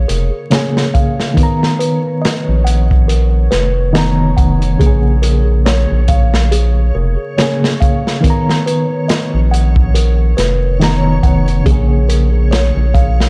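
Trip hop at a slow 70 BPM with a swung sixteenth feel, this dark, smoky excerpt sits in Bb phrygian and moves between Bbm7 and Bmaj7 chords. A reedy, worn electric piano carries the accompaniment with tremolo and tape echo, sounding slightly out of tune through its built-in speakers, while a delicate, tinkling music box plays arpeggios coated in 12-bit sampler grit, tape echo and a low-pass filter that sweeps across the whole passage. Underneath, a round, deep analog bass with a fast attack sits up front, holding the low end between F1 and A#1. A crunchy, saturated breakbeat kit of kick, snare and hi-hat enters at 0.1 seconds with a tight kick and rolled-off top. In the background, a reversed, granular swelling texture holds a single high Db5 in its own reverb. The production is dark and steeped in vinyl crackle and studio reverb, and the passage is cut from a longer piece.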